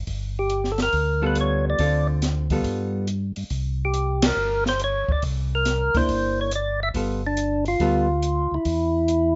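Soul jazz organ trio excerpt at 140 BPM with a greasy, soulful swing, where a round, dark tonewheel organ carries the bass through light overdrive, chorus vibrato and slow rotary speaker, an open acoustic drum kit with dark cymbals, a high-tuned snare and boomy kick keeps time, a fat, percussive tonewheel organ with key click and slow rotary speaker sings the melody over chords moving from G9 through Dm7 and C9, a clean hollow-body jazz guitar adds picked accompaniment from 1.2 to 3.1 seconds and again from 6.0 seconds, and the band hits an accent at 4.2 seconds in a studio room with light reverb.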